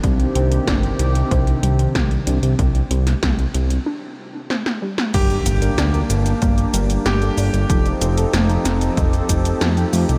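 This uplifting, nostalgic synthwave excerpt opens with a smooth, detuned analog pad holding sustained chords, pumping with sidechain and shimmering with chorus. Beneath it a fat, thick sawtooth bass sits up front with the same pumping motion, while a very quiet, lo-fi, warbling pluck spins arpeggios. The steady, straight beat pairs a punchy, tape-warm electronic kick with 80s drums featuring a gated snare, metallic hi-hats, cabasa and crash cymbal. A break arrives at 3.9 seconds, capped by a drum fill from 4.5 seconds, and at 5.1 seconds a very quiet electronic impact marks the second section. Here a clear electric grand piano with a clangy low end briefly sounds a melody through analog delay, and a dark, round FM electric piano adds stabs in the background, colored by chorus, tremolo and diffuse ambient delay. The kick drops out at 9.4 seconds, and light digital ambience gives the mix a gentle sense of space.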